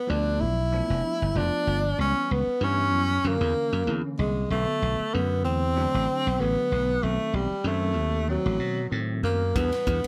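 With light reverb and small-room ambience, this slick, funky electric jazz fusion piece at 95 BPM in swung 4/4 puts a breathy, mellow tenor saxophone solo with vibrato and scooped notes up front over a punchy, amped slap bass and a bell-like, clean tine electric piano with ensemble chorus in the background, moving through G13, C#m7b5, F#7b13, Bm7 and B7b9 before a tight, dry funk drum kit with bright cymbals and a high-tuned snare enters at 9.6 seconds on Em7.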